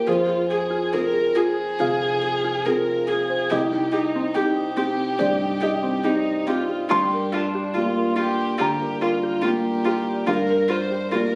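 Neoclassical piano and strings, reflective and melancholic, unfold in a loose, rubato 4/4 over chords of Fm, Cm and Gm7 in this brief fragment cut from a longer piece. A felt-muted upright piano sits up front with a mellow, intimate tone, its thick felt and audible action noise giving the accompaniment a hushed quality. A single violin carries the melody with a dark, woody sound, bowed sul tasto with vibrato and also placed up front. One viola adds rich, airy accompaniment with light vibrato and a gentle attack, while a glassy wavetable pluck plays crystalline, slightly nasal arpeggios in the background, coloured by chorus, slapback echo and a filter sweep. Captured on a phone in the room and set in light studio reverb, the recording has a homespun closeness.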